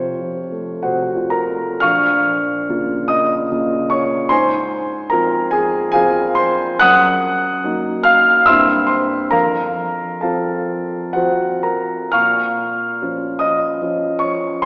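A warm concert grand piano with deep bass sits up front in this bittersweet, passionate excerpt from a romantic classical character piece for solo piano, unfolding in a flexible rubato triple metre from a brief opening into a longer second section at 1.8 s, its sound bathed in a lush concert-hall reverb yet filtered through a thin AM-radio tone.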